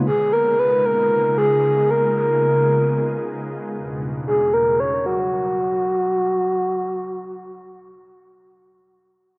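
Amapiano in free time, soulful and relaxed, this short excerpt cut from a longer piece opens on an ethereal, airy pad holding sustained chords from C#13 to Em9, thickened by ensemble chorus and its own reverb until it stops at 4.3 seconds. A breathy, flute-like synth lead sits up front with a melody, soft and sustained with vibrato, chorus and tape echo, carrying on alone until 7.9 seconds. A filter sweep runs through the whole passage, and the mix is echo-heavy with light reverb.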